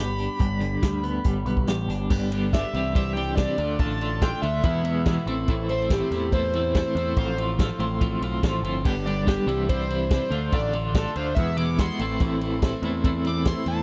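Indie rock excerpt in A minor at 142 BPM, restless and bittersweet, where a gritty, screaming sawtooth synth lead with tape echo takes a solo from 2.1 seconds over a bright, compressed twelve-string electric guitar riff with tremolo, a growling overdriven picked bass and a punchy vintage drum kit with a rolled-off top entering at 0.2 seconds, all captured as a dry, close 1970s-style small-room recording moving through G, Cadd9, Dm, E and Am.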